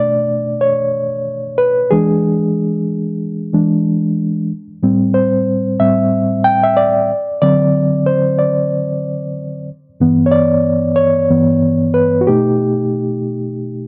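A light reverb gives this short soul fragment a soft, silky glow, with a solo reed electric piano placed up front and heard through its built-in speakers. The piano's tone is reedy and clean, and a fast tremolo shimmers across it from start to finish, spanning G2 to G5. The mood is cinematic, with a gentle swing in the sixteenth notes over a steady four-beat pulse. The harmony moves through Bm9, E7, Am7 and D7 before settling on G6 and then lifting to Baug7 at 12.3 seconds, leaving the 13.9-second passage open-ended. The instrument is tuned to A4 = 439 Hz.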